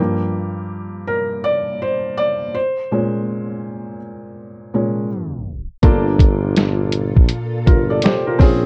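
Lo-fi hip hop fragment, reflective and hazy, in which a soft, felt-muted upright piano with cassette tape character plays alone over Gm7 and Bbm9 until a tape stop at 5.1 seconds, then at 5.8 seconds a muffled, thumpy sampler-style drum kit with vintage 12-bit grit, a mellow jazz-style tuba with light vibrato, and a silky string machine with ensemble chorus in the background join on Gm9, all in a dark, dry production.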